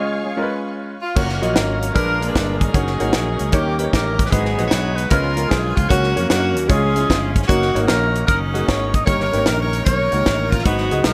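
This uptempo gospel cut from a longer piece has a swung, uplifting and hopeful feel. It opens with a brief break featuring a full, shouting tonewheel organ with chorus vibrato and a slow rotary speaker, set very quiet in the mix. Alongside it are a clear concert grand piano and a lush, bowed symphonic string section, which drops out after 1.1 seconds. An edgy, close-miked saxophone section takes the melody from 1.0 seconds, sitting up front with jazz-style vibrato. At 1.2 seconds an acoustic funk drum kit with a high-tuned snare and tight kick arrives together with a punchy fingered electric bass, played direct and amped. The piano, with deep bass and short sustain, keeps up the accompaniment while the organ holds sustained chords through the changes, all in a dry room with little reverb.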